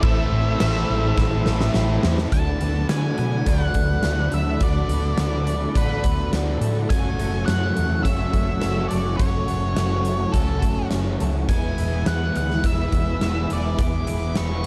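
Blissful and wistful, this 105 BPM shoegaze and dream pop rock excerpt pairs a fuzzy octave-fuzz lead guitar melody with a brassy, detuned analog pad of sustained chords under chorus, very quiet arpeggios from a slightly broken-up electric guitar through a small old amp, a very quiet crunchy overdriven guitar riff, a double-tracked distorted electric guitar riff that drops out at 2.3 s after a drum fill, a background overdriven semi-hollow guitar riff, a round, dark short-scale hollow-body fingered bass, and an up-front arena drum kit with a fat snare, punchy kick and bright cymbals in a pumping hall, all moving from Amadd9 through D6 and F#m to E in a dark, warm small-room production.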